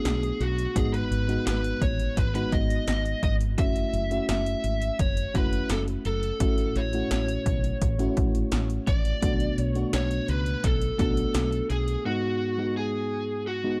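Urgent and moody, this 1980s-style pop excerpt moves at 85 BPM in a straight 4/4, with a chord cycle running Bm7, G#m7, F#m7 and A6 before circling back. A lead guitar through a small cranked amp carries the melody with an overdriven, picked tone, while a mellow FM electric piano fills in the accompaniment with soft, rounded, chorused chords that carry a faint noise layer and a quick, decaying attack. Underneath, a woody fretless electric bass sits dark and hollow-bodied, and 80s electronic pad drums sit up front with a punchy kick, gated snare and metallic hats, their tape-warm sound re-recorded in a small room. Bass and drums drop out at 12.0 seconds, leaving guitar and piano alone through a short break over G#m7 until 13.8 seconds. The overall sound is a dry, close 1970s-style studio recording touched with digital ambience, and the clip is cut from a longer piece.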